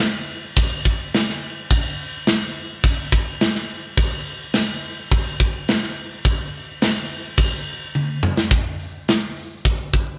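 A tight metal drum kit drives this menacing rock excerpt at 106 BPM in a straight 4/4, coming in at 0.6 seconds with kick, snare, hi-hat, toms and crash cymbal. The acoustic kit sits up front and mid-forward, with bright cymbals, a medium-tuned snare and a tight kick, captured as a band playing live in a small room with moderate ambience. A drum fill at 7.9 seconds leads into a new section at 8.5 seconds before the kit stops at 10.1 seconds.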